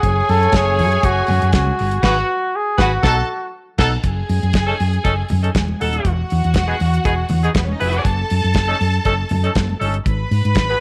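Disco at 120 BPM in F# dorian, this glamorous, danceable passage is cut from a longer piece. A bucket-muted trumpet carries the melody in a veiled, punchy jazz style with vibrato, sitting up front but roomy, and it drops out at 3.5 seconds. Behind it, a lush, bowed string section plays a smooth second line from a distance, while a vintage horn section adds warm pop-style stabs, and the band hits an accent between 2.0 and 4.0 seconds. A round, dark hollow-body electric bass sits prominently, and a dry, damped 70s drum kit with a tight kick, medium-tuned snare and dark cymbals holds the straight groove. Very quiet congas with a soft, thick-skinned tone join at 0.5 seconds, and the whole mix has light reverb and small room ambience, with chords moving from F#madd9 through G#m7 and B7 to F#sus2, Eadd9 and F#m6.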